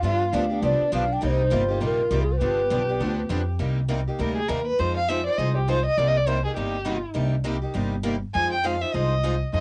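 A brisk swing at 202 BPM in 4/4, with a lilting eighth-note feel, drives this short cut from a longer acoustic string swing piece in C minor, virtuosic and swinging in mood. Two picked steel-string acoustic guitars supply the accompaniment throughout, their bright, boxy parlour tone carrying fresh-string sparkle, with finger squeak audible on one of them. Underneath, a woody, dark pizzicato upright bass sits up front, spanning G1 to G2. A breathy bass bansuri opens with the melody, its bamboo tone close-miked, tongued and shaded with vibrato, before it stops at 3.3 seconds. A bowed violin, soft in attack and rich with vibrato and portamento, plays a second line from the start and then takes an expressive solo from 3.6 seconds to the end as the harmony moves through Cm7 and Fm7. The bansuri, violin and guitars carry a cassette-tape character, and the whole piece has the intimate feel of a home recording in a moderate booth ambience.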